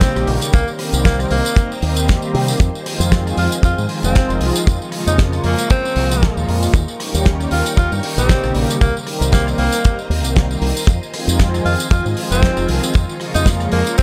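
Nu-disco with a sensual, sleek groove and a gentle swing on the sixteenths, this excerpt is cut from a longer piece and cycles through a progression built on Eb7, Cm7, Fm7 and Db6/F. A clear tenor saxophone carries the solo melody in a pop style, with light vibrato, a smooth top and a touch of digital delay. Beneath it, an analog pad of detuned sawtooth tones swells in slowly and holds mellow chords, colored by analog chorus, tape echo and sidechain pumping. A lush vintage string machine with a sub octave and long release sits in the background, its ensemble chorus and pumping adding a full bed. The fingered electric bass is dark, round and punchy through its envelope filter, stopping at 13.8 seconds. A damped 70s kit supplies a fat snare, hi-hat, rim click and tambourine, while a dry, tight kick sits up front, all set in a small room.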